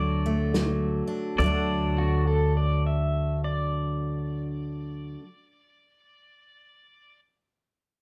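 A woody, growly upright bass sits up front, holding a low D under this easygoing, nostalgic honky-tonk and classic country fragment, cut from a longer piece in D major at 68 BPM in a swung 3/4. A bright, full-bodied steel-string acoustic guitar, also up front, picks the accompaniment, while a clean, twangy electric guitar carries the melody on a high D, both bathed in plate reverb. A pedal steel guitar, played with fingerpicks and slide, holds sustained chords with volume swells and a lush chorus, and a second pedal steel enters in the background at 2.0 s with its own line. An unplugged drum kit, played with bundle sticks in a distant, roomy studio space, adds only a brief touch of hi-hat and snare between 0.5 and 0.8 s. The opening slows down over its first 1.4 seconds, and the whole production has a dark, warm character with light reverb.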